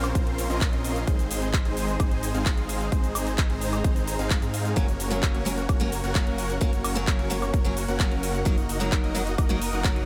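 Emotional and powerful, this festival progressive house excerpt drives a punchy, up-front electronic kick under a big-room kit of handclaps, metallic hats, shaker and woodblock, while huge detuned supersaw chords with tape echo, a thick chorused saw bass and a slow-attack background pad with phaser all pump to the sidechain, and a brilliant-toned picked steel-string acoustic guitar with audible finger squeak joins at 4.8 seconds over chords moving from Bbmadd9 through Ab and Gb to Ebm/Gb in light reverb.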